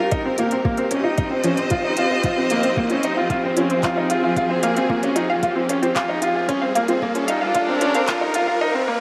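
A soft, overdriven electronic kick and a crisp electronic kit of handclaps and hi-hat set a straight 4/4 pulse at 113 BPM in this intimate, hypnotic piano-and-strings electronica build-up in F minor, cut from a longer piece. A clear, up-front baby grand piano riff and rich, vibrato-laden chamber strings holding sustained chords over Cm, Fm and Gm sit against a round, nasal analog pluck whose detuned, chorused arpeggios carry a filter sweep and sidechain pumping in the background, while an electronic riser enters at 0.5 seconds. Tape echo colours the piano and pluck, shimmer reverb blooms around them and the strings, and the recording sits in a huge, wet ambient space.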